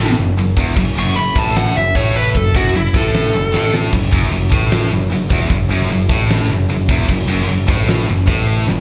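A dark, up-front high-gain lead guitar solo with slapback echo and analog delay opens this driving, menacing hard rock excerpt and runs until 3.7 seconds, over low distorted riffs from a scooped guitar and a heavier one set in the background, a growly, punchy picked bass, and a huge arena drum kit with a fat snare and bright cymbals that enters at 0.4 seconds and plays a fill at 3.5 seconds, the whole performance heard as a live gig through a club PA with small-room ambience and a dull top end.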